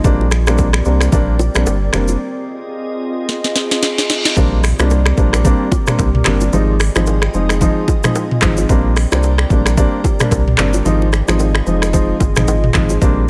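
A deep, round sine sub bass anchors this sunny, breezy afrobeats excerpt at 111 BPM in Bb mixolydian alongside an up-front electronic drum kit with a deep kick, sharp snare, smooth hats, snaps, claps, rim clicks, shaker and toms swung on the 16ths; a dark, mellow grand piano with short sustain comps through alternating Bb69 and Ab6 chords while a glassy, ethereal FM pad with chorus and built-in reverb hovers in the background, very quiet bright congas and bongos sit close and dry, and after a break and drum fill a faint reverse cymbal from 3.6 s leads into an impact at 4.4 s that opens the second section.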